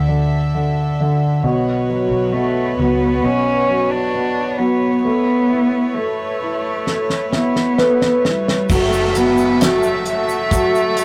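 A woody upright piano, an earthy chamber string section and a round, foam-muted electric bass open this hopeful, heartfelt pop ballad, joined at 1.9 s by an intimate, nasal solo cello carrying the melody with light vibrato, before a dry 70s drum kit with a fat snare enters with a fill at 6.9 s and a grainy shaker and a background downlifter arrive at 8.7 s, the whole captured in a rough, saturated rehearsal-room sound.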